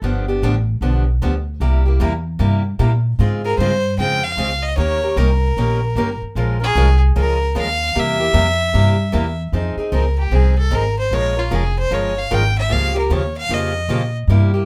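Virtuosic and fiery, this cut from a longer piece of acoustic string swing in the jazz manouche style drives along at 152 BPM in 4/4 with swung eighth notes, set in F minor. A picked, bright parlour steel-string guitar with a boxy tone carries the accompaniment from the start, while a pizzicato upright bass with gut strings sits up front, woody and thumpy, anchoring the low end. At 3.5 seconds a single bowed fiddle enters with the melody, close and up front, its clear, biting tone shaded by light vibrato and an airy, earthy bow. At 9.5 seconds the music moves into a new section where the fiddle takes a solo over a minor-leaning progression. A light reverb gives the small group a touch of space.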